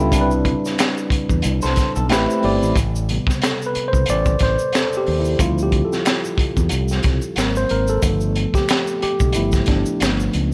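R&B and neo-soul with a smooth, late-night mood, this excerpt rides a loose swung groove under a worn, slightly out-of-tune tine electric piano, a fingered electric bass up front, and a crunchy breakbeat kit whose high-tuned snare, tight kick and gritty, saturated tone sit forward with a rolled-off top. A dark, slightly broken-up electric guitar through a small old amp adds a lo-fi, compressed second line until 2.7 seconds, while a quiet tube shaker and finger snaps tick along in a small room. From 2.8 seconds the warm electric piano takes a solo over chords moving from Cmaj9 and Am9 through Dm11 to G#9 and G9, all under light reverb.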